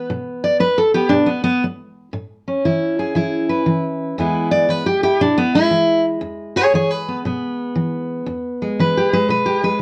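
A fingerpicked steel-string acoustic guitar opens this brief cut from a longer acoustic country blues piece, playing alone from the start with a soulful, swaggering air. The dreadnought sits up front, its dark, woody, full-bodied tone shaped by old strings as it ranges from E2 to D5. The tune moves at 118 BPM in 4/4 with a loping swing on the eighth notes, rooted in E mixolydian and tuned slightly sharp to A4 = 441 Hz. After an opening passage free of any chord, an A chord arrives at 2.1 seconds and E follows at 4.2 seconds, before a new section begins at 8.3 seconds and runs to the end at 9.8 seconds. The guitar sits in a moderate studio reverb, and the whole recording carries the worn, warbling pitch drift of old cassette tape.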